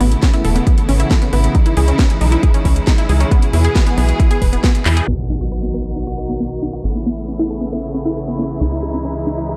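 A tight sawtooth sequencer bass, a house kit's cracking snare, metallic hats and handclaps, lush detuned unison plucks spinning delayed arpeggios, and a rich, bowed symphonic string section holding smooth vibrato chords open this soaring, euphoric uplifting trance excerpt in straight 4/4, with a punchy, up-front electronic kick joining a moment later to drive it. The plucks and strings move under filter sweeps and pump with the bass until a drum fill at 4.9 s hands over to an electronic impact at 5.1 s as the drums drop away, all in a light digital reverb.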